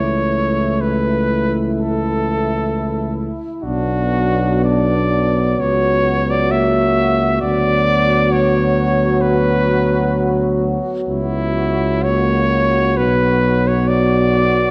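A dark, warm production with light reverb frames this short, serene cut from a longer classical hymn-like piece for brass band, moving at a slow, rubato 58-67 BPM in 4/4 through chords from A/C# to Bm. A clear cornet carries the lyrical melody up front with a soft attack and light vibrato, while a mellow, smooth-topped tuba anchors the bass just as prominently. Behind them, a clear French horn section sings a second line, and a dark euphonium and a distant, roomy trombone fill out the accompaniment, all playing together throughout the 14.7 seconds.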